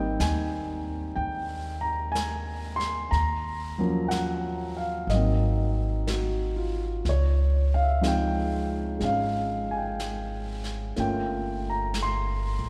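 A slow swung pulse in four, with a lilt on the eighth notes, carries this wistful, intimate jazz ballad, cut from a longer piece. The concert grand piano sits up front as the accompaniment, its tone warm and deep in the low register as it moves through Abmaj7, Ebm7, Ab9 and Dbmaj9 before landing on Gm7b5 at 11.0 seconds. Beneath it, the pizzicato upright bass is woody and close, its steel strings lending the low notes a warm tone. The brush kit joins at 0.2 seconds, lower in the balance, with an airy, polished snare and hi-hat under the brushes. A church-like reverb with a long tail surrounds the trio, lending the quiet playing a spacious, softly glowing sense of place.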